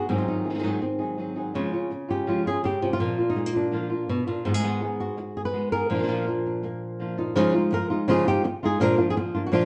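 Heard in a wet studio reverb with a dulled top end, this short clip sounds like two players sharing one room, cut from a longer piece. It is flamenco at 165 BPM in a straight 4/4, with an intense, dramatic mood. Up front, a thumb-plucked acoustic flamenco guitar carries the melody for the full 9.7 seconds, ranging from Ab2 up to Cb5 with a dark tone. Beneath it, a second fingerpicked acoustic flamenco guitar, shadowy in colour and sitting lower in the mix, supplies stabs between Ab2 and Ab4. The harmony moves from Ab7 through Db, Bb and Abm, then shifts at 7.4 seconds into a new section on Dbadd9 before landing on Bb.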